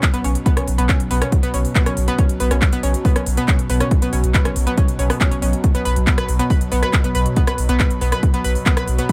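A punchy electronic kick sits up front in this hypnotic, driving peak-time techno passage, its tape-warm analog thump anchoring a straight 4/4 pulse. A layered, produced drum kit adds handclaps, rim clicks and smooth hi-hats, and both the kick and kit carry the character of a small room. A thick, saturated sine sub bass holds a deep low B with overdrive, a low-pass filter and sidechain pumping. Over it, a round analog pluck riff of detuned sawtooth and square waves with a sub octave snaps in with bright, short notes, dressed in a filter sweep, chorus, overdrive, digital delay and the same pumping. In the background, a moody dark pad drone of detuned unison sawtooth and sine layers blooms slowly and lingers with chorus and its own reverb, also breathing with the sidechain. The whole passage rests on a single B5 chord and keeps a largely dry mix, cut from a longer piece.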